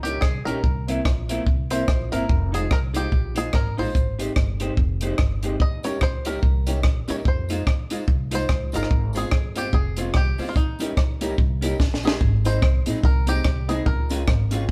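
Recorded with light reverb, as a band playing live in one room, this brief ska passage, cut from a longer piece, has an upbeat, bouncy feel at 145 BPM in 4/4 with a gentle swing on the eighth notes. A compact cocktail drum kit sits up front, dry and acoustic, with a high-tuned snare, tight kick, hi-hat and rim click, and it plays a fill just before the music moves into a new section at 12.2 seconds. A woody pizzicato upright bass on steel strings anchors the low end, while a bluegrass banjo carries the melody, played with fingerpicks for a twangy, percussive tone. An electric guitar through a small old amp adds bright, slightly broken-up picked accompaniment, and a warm upright piano punctuates the harmony with natural-sounding stabs. A jingly tambourine enters at 5.8 seconds, very quiet in the room, as the chords move through Eb7, Fm7 and Abmaj7 before shifting to Ab and Db at the close.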